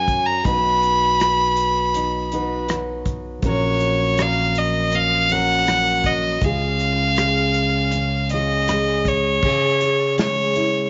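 A bright, up-front violin with light vibrato and an airy bow carries the melody in this intimate, heartfelt acoustic folk-pop ballad at 80 BPM, over a full-bodied fingerpicked jumbo steel-string guitar, a fingered electric bass that stops at 9.4 s as the chords move from B through F#/A# and C# to C#m, and a natural country drum kit with a punchy kick, medium-tuned snare, rim click, hi-hat and crash, all set in a small room with light reverb in a short cut from a longer piece.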